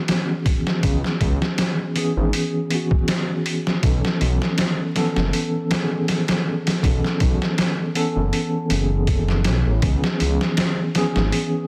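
A deep, rumbling detuned saw bass sits up front from 0.8 seconds beside a muffled, overdriven sampler-style drum kit with a thumpy kick, while a mellow tine electric piano with tremolo and tape echo carries C#m7 and B9sus4 chords in this dark, hypnotic trip hop fragment at 80 BPM, swung on the 16ths and wrapped in a dense modern master with vinyl crackle.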